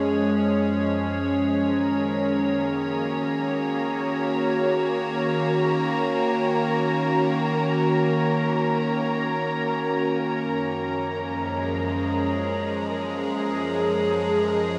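An evolving wavetable pad opens the recording, holding sustained chords in Gb major that morph and warble with a detuned, vintage sine tone, its slow attack and long release giving the ambient music a weightless, luminous mood in free time. Up front in the mix, the pad carries chorus, its own built-in reverb and a shimmer reverb as it moves from Db/Gb to Gb6 and back to Db/Gb at 10.4 seconds. At 1.7 seconds a muted studio violin section enters beneath it, bowing a dark, veiled texture con sordino with light vibrato and a smooth top, also touched by shimmer reverb. The violins range from Bb4 to Bb5, overlapping the top of the pad's register, and play until the close at 14.8 seconds. A lush hall reverb with a 2.8-second decay surrounds both parts, and the passage is taken from a longer piece.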